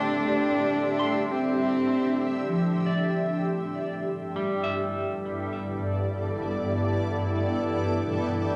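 This luminous, serene ambient passage drifts in free time, cut from a longer piece, with a blurred, evolving granular pad sustaining up-front chords that move from Gsus4 to Em7/G at 3.7 seconds. A dark, boxy bowed cello sings a smooth vibrato melody through tape echo until 3.3 seconds, while a twangy, slightly broken-up electric guitar fades in with picked arpeggios under harmonic tremolo and tape echo, lasting until 7.4 seconds. The home cassette recording sits in a wet studio reverb.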